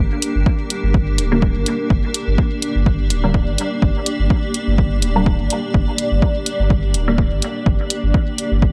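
Cavernous and hypnotic, this short dub techno excerpt in G minor moves at 125 BPM with a light swing, as a blurred, evolving granular cloud pad holding sustained Gm chords in its own reverb sits over a round, deep sub bass with transformer saturation, both pumping against an overdriven, punchy analog kick and an overdriven analog hi-hat up front, while from 1.3 to 7.3 seconds a muted, resonant, detuned chord stab with phaser, 12-bit sampler grit and dub echo plucks through a dry, gritty hardware sound.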